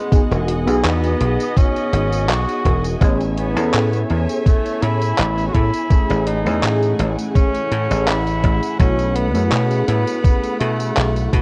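A slow 83 BPM vaporwave groove in 4/4 with a light sixteenth-note swing, where a thumpy, up-front electronic kick and a bright, punchy thumbed slap bass with tube saturation anchor a detuned 8-bit drum machine's handclaps, hi-hat and tambourine under studio reverb. Over it, a breathy, whispered tenor saxophone carries the melody through sampler grit and analog delay, while warbly lo-fi synth keys with ensemble chorus accompany and lush bowed strings in the background sustain chords moving from Emaj9 through Amaj7 and F#m9/A to B7sus4 in E major. Worn cassette tape with pitch drift lends this faded, dreamy excerpt its nostalgic haze.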